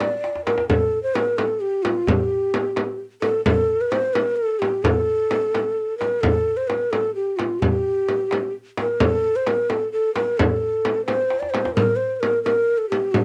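This short section of a longer Persian modal piece in a straight 6/8 opens with the ney, frame drum and tombak sounding together, and a drum fill arrives by 0.2 seconds. The end-blown reed-cane ney carries the melody up front and close-miked, its breathy, hollow tone shaped by vibrato and tongued notes and coloured by a cassette-tape character. Beneath it, the small frame drum is bright and band-limited with a vintage edge, struck with hard hands and placed prominently. The tombak sits further back, tight, compressed and saturated under soft hands, and it falls away at 11.8 seconds after a second fill, as the music moves into a brief new section. The passionate, warm mood is held in a modest small room on a home cassette recording, and the cut ends at 13.2 seconds.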